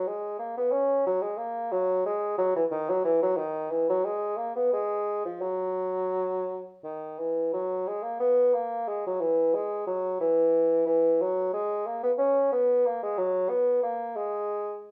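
A wet stone room with a 0.9-second reverb surrounds this recording, which is heard from further back in the space. It is a short passage cut from a longer piece, a classical, baroque-style fantasia for unaccompanied bassoon in 3/4 at 90 BPM, played with a free, rubato feel and tuned to A4 = 438 Hz. The bassoon plays solo from 0.0 to 14.8 s, ranging from D#3 to C#4, its mellow tone carrying a light vibrato while sitting up front yet sounding distant and roomy. The mood is serene and dance-like, and the music moves into a new section at 7.5 s.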